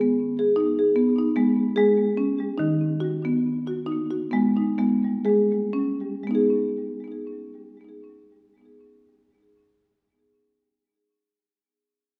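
World meditative tuned percussion in G# minor pentatonic, hypnotic and gentle at 59-78 BPM with a light swing, this brief cut from a longer piece features a solo marimba played with medium mallets on padauk bars, its woody, up-front tone carried by delay through a wet echo-chamber reverb as the tempo slows over the first 6.2 seconds and the harmony moves from G#m to D#m and back before a second section begins.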